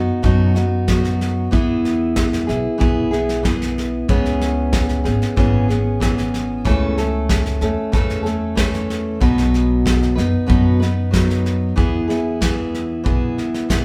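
Hopeful and warm, this short cut from a longer acoustic folk piece moves at 94 BPM in a straight 4/4 in E major, with a picked dreadnought steel-string guitar sitting up front in a warm accompanying role while a woody pizzicato upright bass holds down the low end. A soft brush kit with a medium-tuned snare and punchy kick comes in at 0.2 s, sounding close and present, and the trio plays live together in one room under a wet studio reverb. The chords move from B through E, C#m7 and A/C# back to B, and a new section arrives at 11.8 s as the harmony settles on E.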